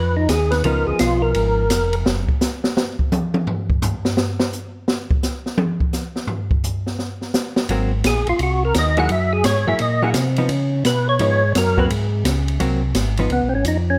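Soul jazz organ trio excerpt, greasy and swinging at 171 BPM in Db mixolydian, where a fat, percussive tonewheel organ melody with key click, chorus vibrato and slow rotary speaker solos over a smooth tonewheel organ bass line and a dark, compressed hollow-body guitar, dropping out with the bass and guitar for an open, up-front drum solo of boomy kick, medium-tuned snare, toms and dark ride cymbal from 2.1 to 7.7 seconds before the band returns over Ab9, Gb9 and Db9 chords in light reverb.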